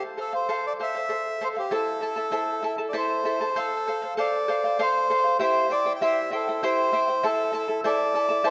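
A reedy, breathy melodica carries the melody up front, its nasal tone ranging from G4 to G5 across this short cut from a longer Andean folk piece. Beside it, a fingerpicked charango plays the accompaniment, its double strings, some doubled at the octave, giving a shimmering acoustic sparkle between E4 and A5. The music moves at 98 BPM in a straight 3/4, tuned slightly below standard pitch to A4 = 438 Hz, and its mood balances melancholy with a festive lift. The harmony moves from F to Am, then a second section from 3.6 s cycles through F, C and Am. Both instruments sit close in a dark, warm production, bathed in the long, wet reverb of a concert hall.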